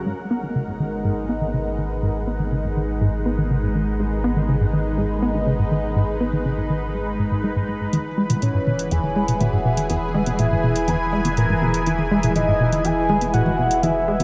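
Ambient, sequencer-driven space music in G# minor at 122 BPM, cosmic and expansive, cut from a longer piece and set in a vast, echoing space with a huge reverb and a cassette-tape grain. A lush, detuned unison pad holds bright chords up front with chorus, phaser and shimmer reverb, while a deep, round sine sub bass sits beneath and a punchy, funky analog bass riff carries a filter sweep and analog delay across the G#m7 to E change. At 7.9 seconds a booming analog drum machine enters with metallic hats and toms, and at 8.4 seconds a soft, octave-layered synth lead, dark and full-bodied with vibrato, brings in the melody.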